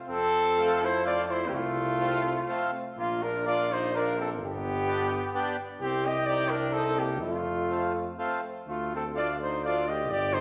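Alpine folk in a jolly, bouncy dance-band style, this short cut from a longer piece moves in 3/4 at 126 BPM with a rubato feel in Bb major, its harmony passing from F through Bb, G, Cm and F to Dm. An up-front, warm flugelhorn with vibrato carries the melody while a clear trumpet with light vibrato and a smooth top plays a lower second line, both in classical style, over a distant, roomy tuba bass. A reedy, full accordion joins at 0.6 seconds and drops out at 9.9 seconds, and a recital-hall reverb of 1.6 seconds gives the whole ensemble a church or concert-hall ambience.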